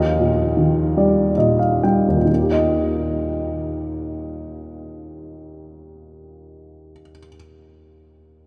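A baby grand piano sits intimate and up front in a vast, echoing cathedral space, its natural tone carrying audible action noise while the wet reverb lingers for seconds after each note. This short classical fragment, cut from a longer piece, is a lyrical solo in Eb major with a sunny, relaxed mood, played in 3/4 with a rubato feel at a tempo drifting between 62 and 81 BPM. The piano alone spans from Eb2 up to G5, opening on an Eb chord. Across the first 2.3 seconds the pace slows while the piano plays a fill beginning at 0.6 seconds, leading into a new section that runs until 7.9 seconds. The piano sounds until 8.5 seconds, its last notes hanging in the cavernous room.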